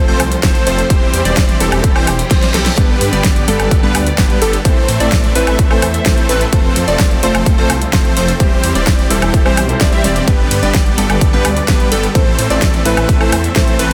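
Festival progressive house in a straight four, this short cut from a longer track feels triumphant and euphoric as it cycles through F, C/E, G and Am. Bright sawtooth supersaw chords carry the riff with sidechain pumping and dub echo, while a thick, saturated detuned saw bass with chorus pumps underneath. A catchy plucky lead spins arpeggios in the background, its tone shaped by a filter sweep and moving notch, and very quiet bowed symphonic strings hold lush sustained chords beneath. A big-room kit with a huge snare, metallic hats, ride and woodblock comes in at 0.2 s, and a punchy electronic kick joins up front from 0.4 s. A reverse cymbal and drum fill lead into 2.8 s, where a smooth, vintage grand piano enters set back in the mix, and the dense, heavily limited master adds light reverb and digital ambience.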